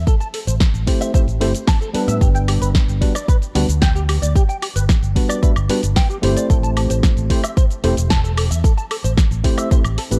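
Groovy and sunny, this short nu-disco excerpt rides a straight feel. A twangy, clean electric guitar plays a picked, compressed riff through ensemble chorus and delay, sitting lower in the balance than the rhythm section. Up front, a fingered electric bass plays through an envelope filter with a bright, amped tone and a sidechain pumping effect, paired with a punchy, layered electronic kick. A house drum kit fills in with bright hats, a punchy snare, shaker and woodblock, while a worn, slightly out-of-tune tine electric piano enters at 0.9 seconds with pumping, delayed chords that sound as if heard through built-in speakers. The harmony moves from Am7 to Gmaj7 and back to Am7, wrapped in a dark, dry production with little reverb.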